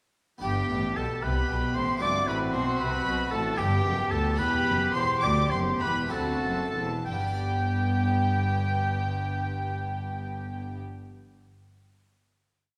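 From 0.4 s a lively, brilliant baroque-style concerto movement in 6/8 unfolds as gut-string period violins carry the melody with light vibrato, doubled up front by a distant-sounding oboe at the octave and in unison, while second violins and dark, reedy violas supply chords in the tune's rhythm, a dry, close-miked Flemish harpsichord adds rolled chords in the background, and the cellos walk beneath with double basses doubling the line, all in a wet scoring-stage reverb, the ritornello slowing from 2.8 s into a final sustained chord at 7.1 s.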